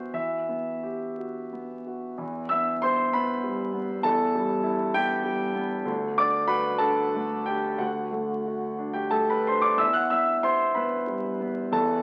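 Through the crackle of a very old 78 rpm record and a moderate large-studio reverb, this intimate, reflective neoclassical minimalist fragment in E minor features a solo concert grand piano, up front with deep bass, an open tone and long sustain, drifting in rubato 6/8 at roughly 54-67 dotted-quarter beats per minute from an opening Emadd9 through Em and D before settling back on Em at 9.8 seconds.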